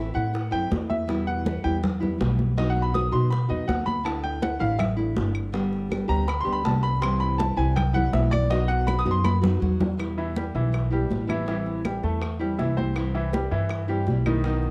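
A straight four-beat Cuban son and guajira groove rides on ringing, high-tuned congas struck with hard hands up close, while tight, high-tuned bongos sit distant in a large-room space from just after the start. Woody claves join at 4.1 seconds, close and dry in the background. The upright bass is pizzicato and dark on steel strings, placed up front. A bright, brilliant baby grand piano with short sustain spins arpeggios and carries a solo through the opening section, its tone colored by cassette tape, as is the fingerpicked nylon-string guitar, whose classical accompaniment includes audible finger squeak. A drum fill at 9.3 seconds leads into a new section at 10.0 seconds, and the sultry, home-recorded cassette sound with light small-room reverb frames this portion of a longer piece.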